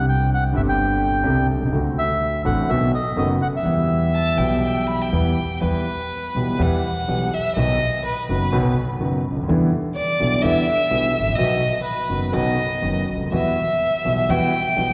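Tango in a dramatic, melancholic rubato, cut from a longer piece, where a reedy, dark bandoneon carries the melody up front until 5.1 seconds over warm grand piano accompaniment and a woody pizzicato upright bass, as an expressive bowed violin with vibrato and portamento enters at 4.1 seconds and takes a solo from 5.6 seconds, the recording bathed in the long reverb of a concert hall.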